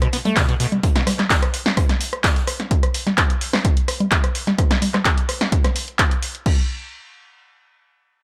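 Gritty and hypnotic, this short cut from a longer acid house track runs at 128 BPM in straight 4/4, opening on a drop where a squelchy, resonant sawtooth acid bass riff with overdrive, lush chorus, cassette tape and digital delay plays only until 0.7 seconds, while a punchy analog drum machine sits up front with congas, crash cymbal, handclaps, hi-hat, rim click and snare, a faint, distant soft-mallet kit adds roomy hi-hat and a medium-tuned snare in the background until 2.6 seconds, and an up-front electronic kick drives from 0.4 seconds to 6.6 seconds before a new section begins at 6.5 seconds, all in a dry mix with little reverb.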